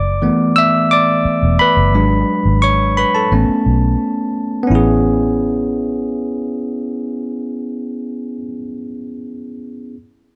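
Light reverb and a digital ambience give this short excerpt a soft, polished glow. It is lush, romantic 1970s-style soul in a straight 4/4 feel. A bell-like tine electric piano, bright, clean and up front, carries the accompaniment across the whole clip and steps forward with a solo through the opening section. Beneath it, a vintage muted fingered electric bass sits low and dark, its foam-muted, round and punchy tone also placed up front, until it stops at 8.4 seconds. The harmony drifts through lush extended chords, opening on a rootless G6 and passing through Bm13/G# and Aadd9 before settling on Amaj9 as a new section begins at 4.7 seconds.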